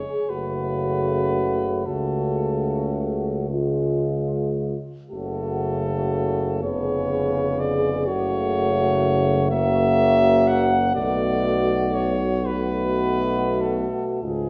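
Yearning and elegiac, this hymn-like passage for brass band, cut from a longer classical piece, moves in a slow, rubato 6/8. A warm cornet carries the melody up front with a present, soloistic voice, while a dark French horn section sings a second line from a distant, roomy place, touched with light vibrato. The trombone, close-miked yet sitting in the background, opens the accompaniment alongside them at the start. At 0.3 seconds a punchy euphonium with its own light vibrato joins the accompaniment, and a mellow tuba enters at the same moment to anchor the bass. The harmony moves from F#m through C# and C#7/E# before F#7 gives way to Bm7 near 11.0 seconds, all set in the lingering reverb of a recital hall.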